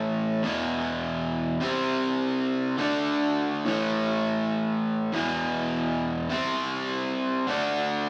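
The recording has the feel of a band playing live in one room, with small room ambience and a moderate large studio reverb that gives the sound some depth. This is a short rock piece cut from a longer work, moving at 102 BPM in a straight 4/4 with a driving, raunchy mood. A single overdriven electric guitar carries the whole 8.1 seconds on its own, dark and picked, double-tracked and placed up front. It ranges from E2 to D4, working through power chords on E5, C5, D5 and A5 before circling back through E5, C5 and D5. The gritty tone and thick doubled sound give the passage a heavy, muscular weight.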